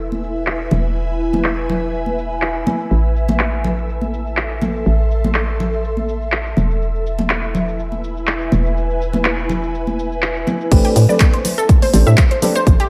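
A dreamy, reverb-soaked mix opens this late-night, smooth deep house excerpt in A minor at 123 BPM, where a hollow, bouncy FM bass pumps beneath an ethereal, airy pad treated with ensemble chorus and phaser, while an overdriven analog drum machine with crash, handclaps, hi-hat and shaker plays alongside acoustic congas recorded in a small room. The harmony moves from E to Am and back to E before the drop at 10.7 seconds lands on Am11. There an overdriven, deep electronic kick arrives up front with a nasal, percussive organ stab carrying lush chorus and delay, joined at 10.8 seconds by a round, detuned analog pluck arpeggio with a cassette-tape tint.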